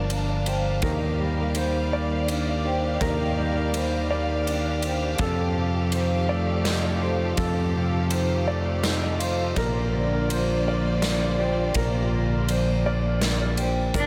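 A warm string section holds sustained chords from the start while a felt-muted upright piano, soft and intimate with audible action noise, and a dark, clean electric guitar bathed in lush chorus spin arpeggios through diffuse ambient delay, over a chord path of Gm7, Ebmaj7, F7 and Bb6. This brooding, cinematic post-rock moves at 82 BPM in 3/4, with a bright, up-front fingered electric bass and a big rock drum kit of punchy kick, medium-tuned snare, hi-hat and bright ride cymbal, all set in a dreamy mix soaked in hall reverb. At 14.0 s a rich, focused bowed cello with vibrato enters up front on a single D4 just as the excerpt is cut off.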